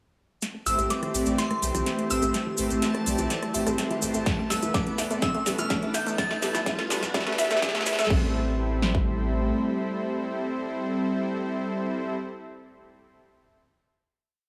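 Progressive house at 125 BPM in A minor, dreamy and emotional, this piece is one long build-up from 0.4 s over Am7, Esus4 and Gadd9. It features a filter sweep on the nasal, wave-folded analog pluck arpeggio, a drum fill, grainy hand-played cabasa sixteenths, a faint riser, a reversed swelling texture holding a high note, and programmed drums with metallic hats, rim clicks, crash and a punchy snare. A glassy FM bell carries the motif-based melody, doubled in unison by a very quiet soft round pluck, while up-front detuned supersaw stabs play off-beat chords and a deep, dark analog bass gallops in sixteenths with tube saturation, both pumping with the sidechain; a four-on-the-floor kick with a layered snare joins at 4.3 s. The other parts fall away after the build, leaving the breathy pad and the supersaw to ring out on a final Am7 chord until 12.1 s, set in a lush hall reverb.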